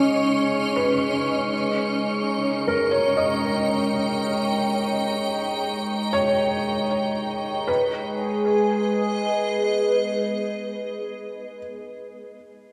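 Four layers sound together at the start of this reflective, spacious ambient fragment in free time and G# harmonic minor: a blurred, bright granular cloud pad holding sustained chords up front, a soft, felt-muted upright piano playing arpeggios through tape echo, a warbling vintage analog drone with chorus, and an airy, breathy wind-like tuned noise texture. The harmony moves from C#sus2 to D# before settling on G#m at 7.7 seconds, where the wind texture drops away. The pad and drone fade out around 11.5 seconds, and the piano rings on alone until 12.7 seconds, the whole set in a wet scoring-stage ambience.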